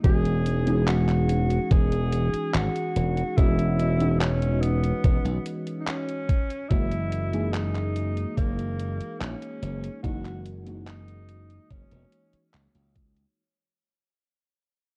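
A thumpy, up-front electronic kick and a detuned 8-bit drum machine's handclaps and hi-hat, both in studio reverb, set a straight 72 BPM pulse in 4/4 for this faded, nostalgic vaporwave fragment, where a punchy, glassy slap bass sits forward under a soft, round FM electric piano with analog chorus and cassette-tape noise moving from Emaj13 to F#13 at 6.3 seconds, while a distant, whispered tenor saxophone with vibrato, scooped notes and 12-bit sampler grit drifts through tape echo in a jazz-style solo, the whole dark, warm mix fading out from 4.5 seconds.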